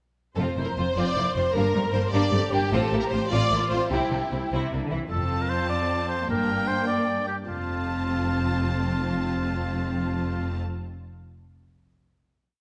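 A full string orchestra and a bright, airy flute ensemble open together at 0.4 seconds in this soaring, heroic adventure-film cue in 6/8. The symphonic violins carry the melody with lush, vibrato-rich bowing and double the tune at the octave, while a distant studio violin section keeps a driving rhythmic ostinato in the background and the flutes add a tongued second line up high. Intense violas weave a counter-melody beneath, and the focused cellos and expressive double basses anchor a driving bass ostinato, with the basses also adding pizzicato. After the flutes drop out at 4.5 seconds, a solo oboe with a soft attack and light vibrato steps up front at 5.1 seconds to sing a classical-style line through the brief outro. The piece settles on a sustained final chord from 7.5 seconds, all held in a moderate scoring-stage reverb that gives the ensemble a grand, spacious sheen.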